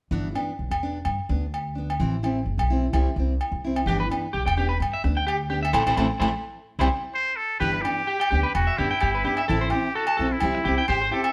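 Highlife guitar band in G major at 128 BPM with a light 16th-note swing, carefree and joyful: a picked dreadnought acoustic guitar with audible finger squeak, a woody, thumpy pizzicato upright bass on gut strings and ringing agogo bells open the cut, a twangy, slightly broken-up electric guitar adds arpeggios from 3.9 s, the band hits an accent at 5.7 s, and a nasal straight-muted trumpet with vibrato takes a smooth jazz-style solo melody from 7.1 s, all played live together in a moderate stone room.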